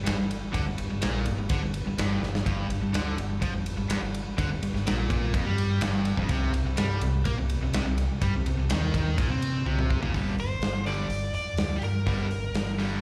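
Hard rock at 125 BPM in G minor, heavy and driving, where a bright distorted electric guitar and an overdriven semi-hollow guitar play riffs with slapback echo over a dark, round fingered bass and a punchy, up-front big rock drum kit with fills at 2.2 and 9.7 seconds, before a nasal lead guitar with a parked wah, overdrive and analog delay takes a short melody from 10.4 seconds, all heard as a live club gig through the venue's PA in this cut from a longer piece.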